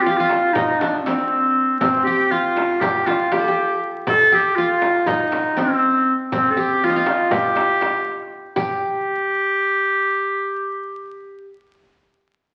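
A straight 9/8 pulse at 240 eighths per minute drives this longing, hypnotic fragment of a Turkish makam ensemble piece in G makam ussak, tuned to A4 = 441 Hz, where a bright, classical-style solo clarinet carries the melody up front while a plectrum-plucked, triple-strung qanun plays a second line beside it, a deep, metal-shelled darbuka in the background and a small, close, dry frame drum played with soft hands both play from 0.3 to 8.8 s, and a large studio reverb and the crackle of a very old 78 rpm record frame the sound.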